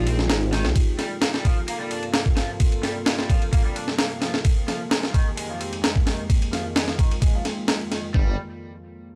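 A warbling, lo-fi pad with chorus, reverb and sidechain pumping opens this gritty breakbeat cut at 130 BPM, alongside an overdriven, bright garage guitar riff run through tube saturation, analog delay and a filter sweep, while a thick, menacing detuned saw bass sounds only until 0.7 seconds and returns at 8.1 seconds. From 0.1 seconds a compressed, pitched-up sampler-style break sits up front with a thumpy kick, high-tuned snare and ride cymbal. The harmony moves between Fm11 and Gm11, and the dry, cassette-tinged recording gives the piece a raw, nostalgic edge.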